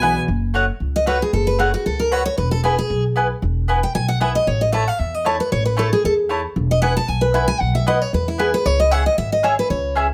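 A driving bluegrass groove in 4/4 swings its eighth notes lightly, giving this short, rustic excerpt a brisk forward push. Upright bass anchors the low end with a thumpy, woody pizzicato tone, while the mandolin adds stabs with the warm, woody ring of its picked double strings. The picked steel-string acoustic guitar carries the spotlight, soloing from 0.3 seconds to the end with a bright, full-bodied dreadnought sound and fresh strings. The harmony moves from F#m through E, A and a Bsus4 before settling on C#m near 8.7 seconds as the passage begins again. All three instruments sit up front, captured by close, detailed microphones with light reverb that keeps the picking crisp and immediate.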